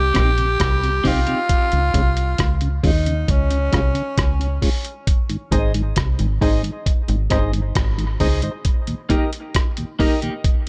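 Dub reggae at 67 BPM, meditative and hypnotic, opens this short cut with a raspy, gritty tenor saxophone carrying the melody up front through dub echo until 4.6 seconds, over a round, foam-muted fingered bass that holds the low end until 8.4 seconds and a muffled, pitched-down sampler-style drum kit with a thumpy kick, hi-hat and rim click. A mellow tonewheel organ with chorus vibrato and slow rotary speaker plays underneath, while a bright, twangy clean guitar touches in briefly at the start and again near the end with its own dub echo. From 5.5 seconds a hollow, percussive organ stab with ring-modulated decay and echo enters in the upper register as the chords move from Cm and Db to Ab and Eb, all in a dry, close sound.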